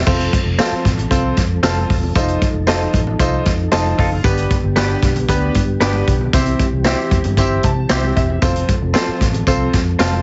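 A heavily compressed, radio-like sound with light reverb and a rolled-off top frames this short cut from an uplifting, danceable 1960s-style soul tune in F major at 115 BPM, driven by an up-front vintage drum kit with dark cymbals and a punchy kick alongside a round, foam-muted fingered electric bass. A clear, worn grand piano carries the accompaniment and adds fills at 3.5 and 7.4 seconds, while a soft, flute-like tonewheel organ holds sustained chords in the background through a fast rotary speaker and chorus vibrato. From 0.6 seconds a scooped, direct-recorded clean electric guitar adds picked stabs touched with spring reverb, with a jingly tambourine and very quiet ringing congas filling out the percussion over a progression moving from F through F7, G and C back to F.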